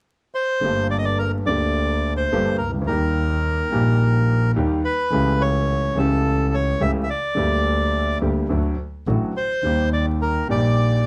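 A reedy, bright bandoneon carries the melody up front from 0.3 seconds, close-miked and dry, in a sultry, tense tango at 107 BPM with a rubato feel, cut from a longer piece. A smooth, vintage-toned concert grand piano with deep bass accompanies it from 0.6 seconds, while a single bowed double bass adds a biting, nasal, earthy line with light vibrato through chords moving from Gmadd9 to Eb, A7/C# and Gm/D. The dark production has moderate studio ambience and a layer of vinyl crackle.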